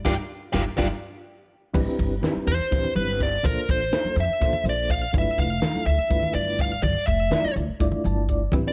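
Electric jazz fusion in a slick, intense 7/8 at 248 BPM, where a band accent and a drum fill from a crisp, roomy kit with a high-tuned snare give way at 1.7 seconds to an up-front, dark, overdriven lead guitar solo with slapback echo over Am11, Bbmaj7 and G13 chords, backed by woody, thumpy pizzicato upright bass, a reedy electric piano with fast tremolo that adds a fill near 7.8 seconds, hard-handed congas in the background and brief clean electric guitar stabs with subtle chorus, set in light reverb.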